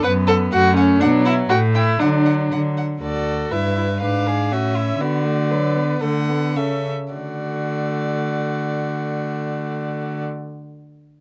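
A dark, nasal second violin sits up front in this spirited, lively string quartet movement from the classical period, cut from a longer piece in D major and a brisk 2/4 at roughly 102-123 BPM. Above it, the first violin carries the melody in a higher register with a light vibrato, while the cello anchors the bass with a rich sound that is also placed up front. The viola fills out the accompaniment with a smooth top. All four players use gut strings and a period style with a reedy edge, heard through close, detailed microphones and a light reverb. The harmony moves through F#m, Bm, Em/G and a G#dim7 before the tempo slows from 4.5 to 7.1 seconds, easing into a settled D major chord at 7.1 seconds.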